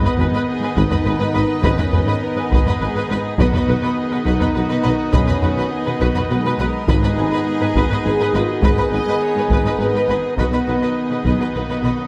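A steady 3/4 pulse with a straight feel is driven by a close, dry taiko ensemble struck with heavy sticks, giving this epic, dramatic orchestral film-score excerpt its weight. Underneath, a rich cello section, a double bass section and a very quiet mellow tuba hold the low bass, while a mellow French horn section, a dark, roomy trombone section and the shimmering string-celeste stops of a pipe organ sustain chords that alternate between G# minor and B. In the background, a lush, focused viola section plays accompaniment, a violin section carries a second line, and a distant, vibrato-rich violin section sings the melody. Timpani played with hard mallets add a brief, articulate accent from 6.9 to 7.7 seconds. A moderate concert-hall reverb gives the whole ensemble a spacious, cinematic depth.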